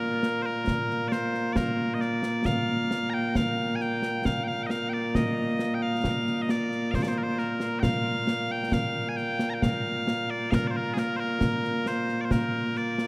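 Heard within a vast, echoing space, the recording is bathed in a long, wet cathedral reverb that lets every note hang in the air. This is traditional Scottish pipe music in a stately triple metre, with a ceremonial, proud mood, and it is cut from a longer piece. The bagpipes carry the melody alone and up front, their bright, piercing, continuous tone sounding from the very start and ranging from a low B-flat up to a high B-flat three octaves above. At 0.2 seconds a concert snare drum and concert bass drum join, placed close and acoustic, with dark cymbals adding shade beneath the pipes. The tune is stated once and then begins again at 7.8 seconds, running to the end of the clip at 13.1 seconds.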